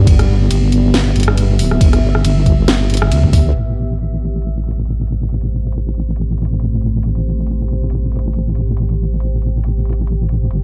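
A heavy, saturated wobble bass sits up front in this meditative, cavernous deep dubstep excerpt in A minor, its detuned sawtooth and sine tones given a mellow chorus sheen as it moves from a G chord into Am7 at 3.5 seconds. The track opens on a drop at 138 BPM with a half-time, swung feel, where a muffled, pitched-down electronic kick thumps until 3.4 seconds while a layered garage kit carries on with a cracking snare, rim clicks, ride cymbal and bright hats, the hats, snare and cymbals softened by low-pass filtering. Beneath, a deep, moody ambient pad holds slow-attack sustained chords with a sub octave, chorus and its own reverb, completing a dark, warm production.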